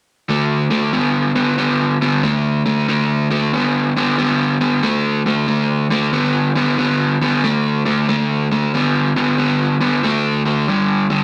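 An overdriven semi-hollow electric guitar takes the solo from 0.3 to 11.2 seconds in this laid-back, rollicking blues fragment, picked up front in a low register with a warm, hollow-body bite bathed in spring reverb. The tempo sits at 92 BPM in 4/4 with a swung eighth-note feel, moving from a D5 power chord to G5 at 10.7 seconds. A wet club reverb surrounds the guitar, giving this short cut from a longer piece a close-quarters sound.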